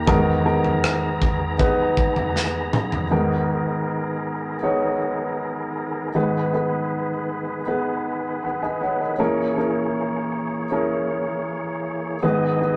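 A longing, emotional pop ballad excerpt in G# minor at 79 BPM, where an intimate grand piano with audible action noise carries the accompaniment up front alongside clean, sustained tonewheel organ chords colored by chorus vibrato, key click and a fast rotary speaker, while an acoustic drum kit with a punchy kick, medium-tuned snare and rolled-off top plays kick, rim click, snare and toms only from 0.1 to 3.1 seconds, ending in a fill from 2.4 seconds, as the harmony later moves from G#m through A#m7b5 and back to G#m in a rough rehearsal-room recording with moderate reverb.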